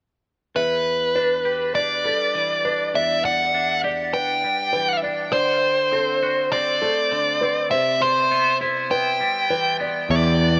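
Steeped in a huge ambient reverb, this brooding, cinematic rock excerpt in E minor moves at 101 BPM in a straight 4/4, with a nasal, overdriven lead guitar through a parked wah carrying the up-front melody over soft, felt-muted upright piano arpeggios and bright, twangy clean electric guitar arpeggios washed in chorus and delay, moving from Em7 through D7 and Cmaj7 before a dark, round fuzz bass enters at 10.1 seconds as the harmony returns to Em7.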